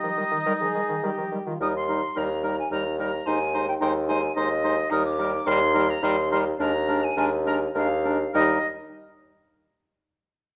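All five wind players sound together from the first moment in this cheerful, graceful, quick movement in triple time, taken from a longer classical-period piece for wind quintet. An airy silver flute carries the melody high above the group with a straight tone and crisp attack, while the oboe shapes a second line beneath it. The clarinet adds warm accompaniment alongside a clear French horn, and the bassoon anchors the bass from close up; oboe and bassoon both sing with a light vibrato. The harmony rests on the home chord, moves to a chord over an E-flat bass around 3.3 seconds, and returns home before a dominant-seventh colour leads into a fresh passage at 8.3 seconds. The lower four parts stop at 8.6 seconds, and the flute follows a moment later, all set in a moderate recital-hall reverb.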